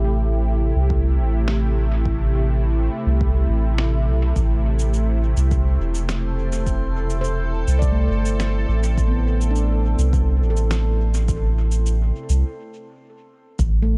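A smooth, detuned analog pad with chorus holds an A minor seventh chord over a round, up-front sub bass from the start of this meditative ambient dub excerpt at 104 BPM. A deep, layered electronic kick sits in the background, and a muffled, pitched-down snare with cabasa carries dub echo. A glassy sine texture of drifting overtones, chorused and reverberant, enters at 5.2 seconds, and a ringing stainless-steel handpan plays arpeggios through tape echo from 7.2 seconds, until the pad and texture stop at 12.4 seconds for a brief break that leaves bass, drums and handpan in a dark, dry mix.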